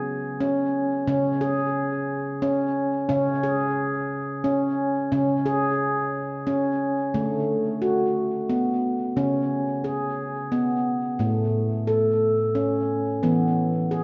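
A lone handpan opens on a C#5 chord, its ringing stainless-steel tones placed up front and cushioned by a diffuse ambient delay. This is hypnotic, meditative world music for tuned percussion in 6/8, moving at 59 beats per minute counted in dotted quarters with a straight feel. The handpan carries the piece by itself across a range from A2 to A4, its sharp finger strokes giving a bright, airy edge to the resonant notes. At 7.1 s the music moves into a new section built on D, then returns to C#5 before passing through A and arriving on E at 13.2 s. A wet church reverb lets each stroke hang in a spacious, glowing room, deepening the calm, trance-like mood of this fragment from a longer piece.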